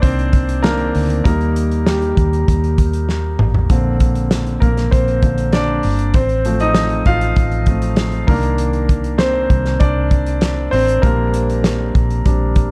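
Warm and uplifting, this excerpt of piano-driven pop moves at 98 BPM in a straight 4/4, set in Bb major. A clear, polished baby grand piano sits up front and carries a solo across the full 12.7 seconds, its long sustain ringing over a progression that runs from Cm7 through Eb, Bbadd9 and F/A before returning to Cm7 and settling on Bb6. Beneath it, a vintage muted fingered electric bass gives a round, punchy, foam-muted low end from G1 to Eb2. A loose indie drum kit, acoustic and also up front, pairs a fat snare with a tight kick, hi-hat and toms, and adds a short fill between 3.1 and 3.7 seconds. Light reverb and small room ambience frame a dark production.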